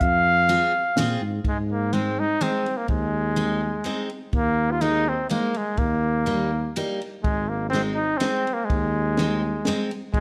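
In a straight 3/4 at 124 BPM, this bouncy, festive alpine folk dance tune in Ab major puts a warm, classical-style trumpet with light vibrato up front on the melody over a mellow tuba bass and a compact, dark cocktail drum kit with a punchy kick and high-tuned snare, while a bright, full-bodied picked jumbo steel-string acoustic guitar joins up front at 0.5 s, and a moderate recital hall reverb surrounds the band as the chords move from Fm to Ab, Ebsus4 and Eb.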